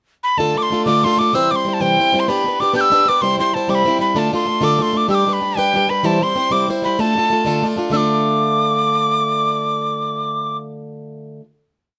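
A driving, spirited Celtic jig in 6/8 at 127 BPM in D dorian, where a breathy metal whistle with soft chiff and unsteady vibrato carries a motif-based melody up front from 0.2 seconds, while a boxy, picked swing-style acoustic guitar strums open chord shapes alongside it in a close, detailed studio room with moderate reverb, ringing on after the final chord until 11.5 seconds.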